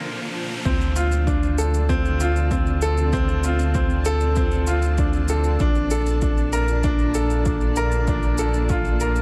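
Piano and strings electronica, moving and intimate, cut from a longer piece, opens with a clear, woody upright piano riff carrying tape echo over a blurred, granular cloud pad with sidechain pumping in the background and a brief electronic riser, then drops at 0.7 seconds into a round, deep analog bass with sidechain pumping and a high-pass filter, a punchy, overdriven electronic kick drum and an overdriven shaker, all set in light digital ambience as the harmony moves from Bbmaj7 to Dm7 and back to Bbmaj7 at 5.6 seconds.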